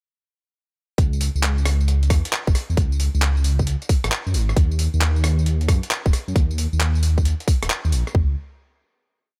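A short, late-night two-step garage piece in C# dorian opens straight into its drop at 1.0 s, with bass and two drum kits arriving together at a bouncy 134 BPM with a heavy 16th-note swing. The garage kit sits up front with a tight, layered two-step kick and floor tom, giving the groove its produced, electronic weight. Behind it, a gritty, compressed, sampler-style breakbeat kit adds skipping swung closed and half-open hats, rim clicks, claps and tambourine, pitched up and tape-warm, re-recorded in a small room. The dark detuned saw bass rumbles deep and up front, its beating sawtooth tone blended with square and sine layers, sharp in attack and sustained, carving a skipping syncopated line that pumps against the kick. The drop runs to 8.1 s, after which a final note carries the piece out by 9.4 s, all in a dry mix with little reverb.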